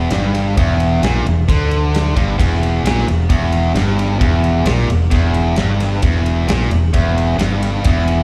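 Blues rock power trio with a southern rock streak, this brooding, heavy fragment of a longer live gig holds a single chord as a bright, double-tracked electric guitar grinds out a low overdriven riff with a slapback echo, pushed up front. A growling picked electric bass, amped and overdriven, adds weight an octave below, and from 0.1 seconds a big acoustic rock kit joins with a punchy kick, fat snare and shimmering ride cymbal. The sound carries the club reverb and small-room ambience of a venue's PA.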